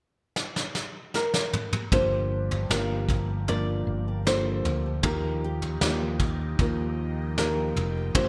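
A slow, straight 4/4 at 77 BPM opens with a brushed drum fill at 0.4 seconds on a roomy, distant kit with a punchy kick and gated reverb, setting up a heartbroken pop ballad in G minor. A fingerpicked flamenco guitar carries the melody from 1.2 seconds with finger squeak, subtle chorus and delay. At 1.9 seconds a round, dark fretless electric bass arrives up front alongside a felt-muted upright piano, mellow and intimate with audible action noise and lush chorus, moving from Gm7 to Ebadd9. From 2.5 seconds a breathy, detuned pad with phaser sits in the background of a bright 1980s-style digital production.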